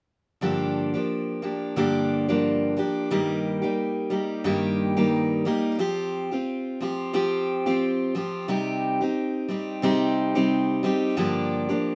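A picked steel-string acoustic guitar opens this tender, wistful pop excerpt, sitting up front with a warm tone and audible finger squeak as it moves through Gm7, Eb/G, Fsus2 and Cm before returning to Gm7 at 11.2 seconds. The accompaniment carries a light sixteenth-note swing in four, and a moderate studio reverb lends the guitar an auditorium-like sense of space until it stops at 11.9 seconds.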